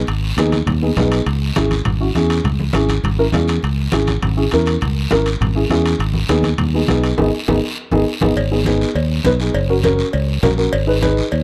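A round, dark fingered electric bass opens this passionate, danceable cumbia excerpt, joined almost at once by congas, guiro, and timbales with cowbell at a brisk 203 BPM in straight 4/4 and G# minor. Up front beside the bass, a dark upright piano carries the accompaniment with a woody, boxy tone, long sustain and audible action noise, moving through G# minor and C# minor. The percussion sits behind, with low-tuned congas struck by hard hands, a raspy guiro, and ringing metal-shell timbales and cowbell heard close and dry. The band hits an accent from 7.2 seconds, capped by a drum fill, before a new section at 8.4 seconds turns to F# and settles back on G# minor. The sound is that of a dry, close 1970s-style studio in a small room, and the clip is cut from a longer piece.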